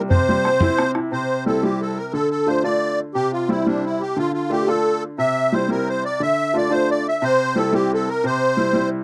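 A reedy musette accordion carries the melody up front in this lively Celtic jig, its shimmering musette tuning sounding full and dry under close miking. Cut from a longer piece, the roughly nine-second passage moves in a brisk 6/8 at 118 BPM in C mixolydian, with a bright, spirited mood. A brilliant, woody upright piano sits up front alongside it as accompaniment, its natural tone and short sustain outlining a steady alternation between C and D minor chords. An open, boomy bodhran joins at 0.1 s and drops out by 1.0 s, its compressed, saturated sound marking the opening phrase before the tune repeats from 1.1 s. Light reverb lends a touch of space to an otherwise intimate, close 1970s-style studio sound.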